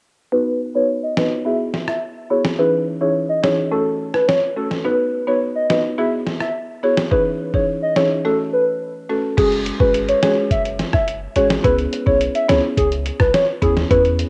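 Recorded at home on cassette with a moderate spring reverb, this cut from a longer dancehall piece in C# minor moves at 106 BPM with a tough, hypnotic pull. A hollow, clarinet-like synth lead with chorus and tape echo carries the melody over an up-front, buzzing marimba that is dry and sidechain-pumped, both low-pass filtered as a filter sweep runs through the opening, while a muffled, compressed sampler-style drum kit with a thumpy kick enters at 1.2 seconds. After a short break at 8.2 seconds, a deep, boomy 808-style bass arrives at 9.4 seconds under chords shifting from F#sus2 to C#m7.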